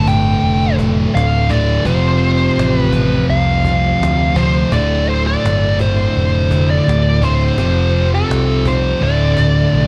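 A hypnotic, sludgy slab of stoner and doom metal in D minor, this short excerpt moves at 84 BPM in a straight 4/4 over a Dm to F progression that settles onto F5 and then D5 power chords near the end. Up front, a dark fuzz lead guitar carries the melody between A4 and A5, colored by wah, distortion and tape echo. Beneath it, a pair of thick fuzz guitars and a tight, bright, double-tracked distorted guitar grind out the low riff in the background, one of the fuzz guitars sitting very quietly in the mix. A picked electric bass with overdrive gives the bottom end an amped, warm weight, while a very quiet, reedy tonewheel organ holds sustained chords through a slow rotary speaker, with chorus vibrato and audible key click. A snappy acoustic cajon with snares keeps time from 0.1 to 9.5 seconds, set back in a live room, and the whole production leans dark and warm under a digital ambience.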